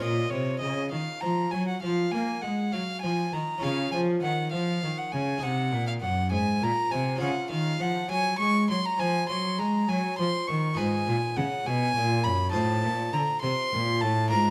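A close, up-front solo violin with a reedy gut-string tone carries the melody through this grave, flowing baroque-style sonata movement, moving in a rubato 12/8 at 67 dotted-quarter beats per minute, tuned to A4 = 439 Hz. A bowed period-style cello, equally rich and close, supplies the bass line, while a brilliant, airy Flemish-style harpsichord with three sets of strings fills in plucked accompaniment beneath. The chords travel from B-flat minor through D-flat and A-flat seventh to a closing F7 over A, all set in a moderate recital hall reverb and cut from a longer piece.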